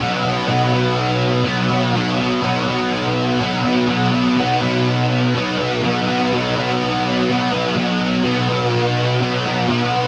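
A double-tracked fuzz guitar opens on a Cb5 chord and carries this brief, wistful rock fragment alone, moving at 123 BPM in a straight 4/4 and shifting into a new section at 7.8 seconds. Picked and compressed, the up-front guitar sits between Cb3 and Cb4 with a warm, distorted tone thickened by ensemble chorus for a dreamy shimmer. Light reverb and digital ambience surround it in a dense, heavily limited modern master.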